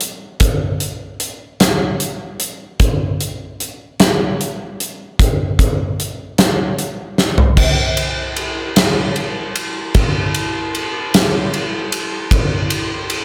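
A huge arena drum kit opens the recording, playing alone in a rock groove at 50 BPM in 6/8 with a straight feel, counted in dotted quarters. The mood is brooding and cathartic, carried entirely by crash cymbal, hi-hat, kick drum, ride cymbal, snare drum and toms. The acoustic kit sits up front in a big room, with a fat snare and a punchy kick giving the beat its weight, while light reverb adds a sense of space. A drum fill at 7.2 seconds leads into a new section at 7.6 seconds, which carries on to the end at 13.2 seconds. It is cut from a longer piece.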